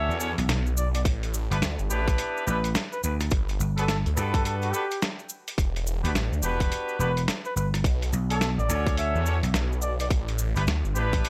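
A swung 106 BPM glitch hop groove in 4/4, playful and swaggering in E dorian, pairs a tight, up-front electronic kick from 1.1 seconds with a gritty, pitched-down boom bap sampler kit of hi-hat, rim click and snare, grainy cabasa, a punchy, growly slap bass and a swirling, phased detuned saw bass, while a brilliant horn section with 12-bit sampler grit, sidechain pumping and delay fires stabs under a mellow, vibrato-tinged solo trumpet melody that ends at 10.1 seconds, all over Bm7, A7sus4, Gmaj7 and Em7 chords in a dry, gritty mix cut from a longer piece.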